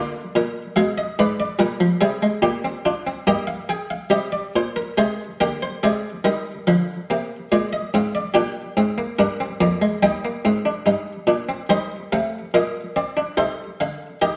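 The recording sits in a wet stone room with a 1.2-second reverb, heard from further back in the space. This is a classical, baroque-style four-part fugue for solo harpsichord, driving and solemn, cut from a longer piece and moving at 72 BPM in a straight 4/4, with the instrument tuned to A4 = 444 Hz. The harpsichord plays with the buff stop engaged, giving a plucked, muted, lute-like tone in the French style that is itself dry and up front. It spans Eb2 to G5 across the full 14.4 seconds. The harmony opens on Ddim7 and Bb7 before settling onto Eb/G, and a second section begins at 5.0 s on Ab/C. From there the chords pass through Ddim, Gm, Cm/Eb and Eb before closing on Adim/C.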